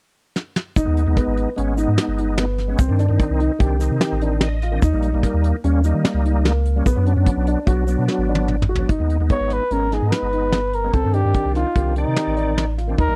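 Driving 5/4 at 147 BPM with a straight feel, this tense progressive instrumental excerpt opens on up-front brushed drums with a fat snare and tight kick, joined by a deep, smooth sine sub bass with tube saturation, mellow piano arpeggios carrying audible action noise, a reedy tonewheel organ with key click, chorus vibrato and fast rotary speaker, and a grainy egg shaker in the background until 8.1 seconds, before a dark, close-miked jazz-style trumpet takes the melody with vibrato at 9.3 seconds, all in a dry, close 1970s-style small-room sound.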